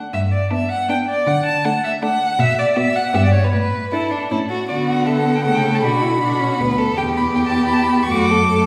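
Heard through the wet reverb of a church or concert hall, this graceful, cheerful classical-period movement for string quartet in a quick triple metre is cut from a longer piece. A rich, smooth first violin carries the melody up front with even vibrato, sounding slightly distant, while a clear, focused cello anchors the bass from 0.1 s; a close second violin adds a second line, and a dark viola supplies expressive accompaniment with soft attacks and portamento, both entering at 0.5 s. The harmony moves between major and minor chords, and a new section begins at 4.7 s.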